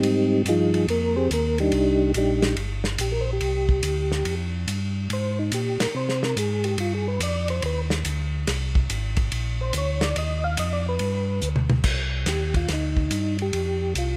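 A swung 4/4 groove at 142 BPM drives this late-night, bluesy soul jazz organ trio excerpt in C minor. A soft, flute-like tonewheel organ with percussive attack carries the melody as a solo through slow rotary speaker and chorus vibrato, while a second organ lays down a round, lightly overdriven bass line, and an up-front acoustic kit with dark cymbals and a punchy kick plays a fill from 11.4 to 11.8 seconds. Light studio reverb frames the rough home-demo mix, and the chords move from Fm9 and Cm9 through Ab and G before closing on Cmadd9 and Fsus2.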